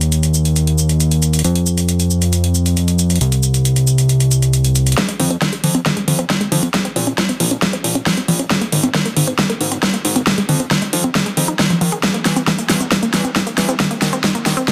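Dense, heavily limited and lightly reverberant, this driving, soaring uplifting trance excerpt opens on a fat, saturated sawtooth bass pumping up front beneath a small-room dance kit of huge snare, metallic hi-hats and shaker, until at 5.0 seconds a lush, warbling unison pluck arpeggio with dub echo and a filter sweep arrives alongside a punchy kick in the background, carrying a build-up and drum fill over chords moving from Fm7 to Eb5.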